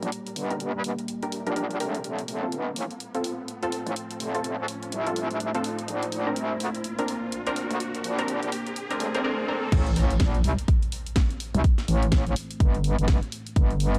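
Bass house with an aggressive, gritty mood, cut from a longer piece and swung on the sixteenths in 4/4. A metallic wobble bass sits up front throughout, saturated and compressed with overdrive and chorus, pumping against the sidechain beneath a deep, moody ambient pad whose warbling, vintage sampler grit holds sustained chords over Gm, F and Bbadd9. An orchestra-hit-like synth stab, bold and bright with detuned unison and ring modulation, enters at 0.5 s, treated with cassette tape, delay and its own reverb, while filter sweeps on both stab and pad, a riser and a swell drive the build-up alongside a house kit with a cracking snare, hi-hat and crash. At 9.7 s the drop lands on Am with an impact and a punchy, tape-warm electronic kick pushed up front, re-recorded in a large room like the rest of the drums. The production is dark overall, with light reverb.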